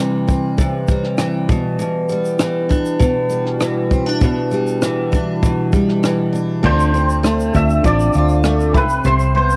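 Carefree and heartfelt, this short acoustic pop excerpt moves at 99 BPM in a straight 4/4, with the whole home-recorded-on-cassette sound wrapped in light studio reverb. A double-tracked steel-string acoustic guitar opens alone, picked and up front with a concert tone, moving from C to Em7/B, and a compact cocktail drum kit joins at 0.3 seconds with a punchy kick, rim click, shaker and dark crash cymbal in a dry setting. At 6.6 seconds the harmony shifts to Dm7 and later Cmaj7, and a vintage muted fingered electric bass enters, round, amped and foam-muted, sitting up front in the low end of the mix. An intimate upright piano arrives at the same moment, woody and polished with audible action noise, tucked into the background. A twangy, compressed clean electric guitar takes the melody from 6.7 seconds, its tone thickened by ensemble chorus and cassette tape.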